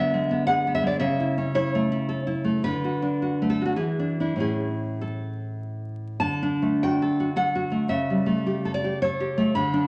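A nylon-string guitar plays alone through this short romantic fragment, cut from a longer classical guitar piece, its full-bodied, fingerpicked tone sitting up front with a deep classical character across a range from A2 to B5. The mood is tender and warm, moving in 3/4 with a rubato feel at roughly 95-113 BPM, and the tuning sits slightly low at A4 = 435 Hz. The opening section rests in A major, passing through E7/D, A/C#, Bm7/D and E7 before settling on A at 4.4 s. At 6.2 s the music shifts into D major for a new section, moving from D to A7/C# before the fragment breaks off at 9.9 s. A large studio reverb gives the guitar a wet, spacious halo, while a vinyl crackle lends the sound an aged patina.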